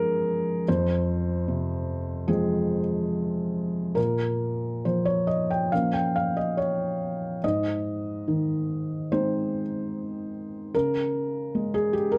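Rubato and uneven at around 72 BPM in 4/4, this wistful, melancholic neoclassical minimalist fragment in F minor, cut from a longer piece, features a solo felt-muted upright piano, soft and intimate with thick felt, audible action noise and an up-front presence, ranging from F2 to G5 through chords of Db, Fm, Bbm, Ab and Db5 across its 12.2 seconds, set in light reverb with a dark production.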